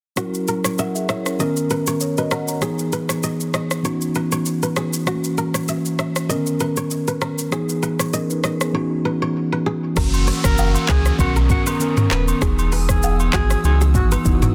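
Smooth and sultry, this afrobeats passage moves at 98 BPM with a lightly swung sixteenth-note feel, cycling through F#7, Bmaj9, Emaj7 and C#m11 as a mellow, clean tine electric piano sits up front beside a crisp, ringing fingerpicked kora riff touched with tape echo. An electronic afro-pop kit drives from 0.2 seconds with a deep kick, smooth hats, handclaps, rim clicks, shaker, toms and crash, its snare gently soft-clipped. At 10.0 seconds a round sine sub bass arrives up front alongside a soft, detuned pad with chorus and a background downlifter, with agogo bells and woodblock following at 10.1 seconds, and from 10.4 seconds a breathy alto saxophone with light vibrato carries the melody in a dry, dense, heavily limited modern mix.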